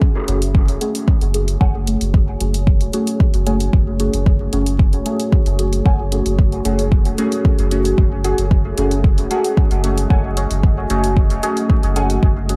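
A deep electronic kick sits up front from the very start of this nocturnal, hypnotic dub techno excerpt, driving a straight 4/4 at 113 BPM in F# dorian, tuned to A4 = 444 Hz. Dark, layered hi-hats ride quietly above it. A round, sine-like sub bass, also up front, pulses with sidechain pumping. A soft, warbling chord stab on F#madd9 carries a vintage, detuned character through chorus, phaser and dub echo. Beneath these, a moody ambient pad built from unison sawtooth layers with a sub octave holds slow-attack sustained chords, its long release blurred by chorus and built-in reverb. From 1.6 seconds a muted, filtered dub stab with a filter sweep and 12-bit sampler grit flickers in the background through phaser and echo, while vinyl crackle and light reverb give the whole recording a dusty sheen.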